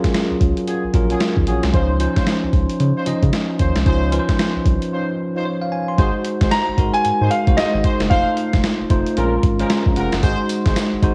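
A gritty, compressed boom bap drum kit with a thumpy kick, tambourine and hi-hat sits up front in this slick, bouncy new jack swing excerpt with a swung sixteenth-note feel, dropping into a break at 4.9 seconds. A bell-like tine electric piano carries the rootless minor-eleventh and major-ninth chords and later adds a short fill, while a round, dark analog bass holds the low end and a mellow, tight horn section punctuates with tape-echoed stabs. A brilliant concert grand piano plays a brief melody from 6.5 to 8.6 seconds, and the electric piano, drums, horns and grand all carry a cassette-tape home-recording color in a moderate room reverb.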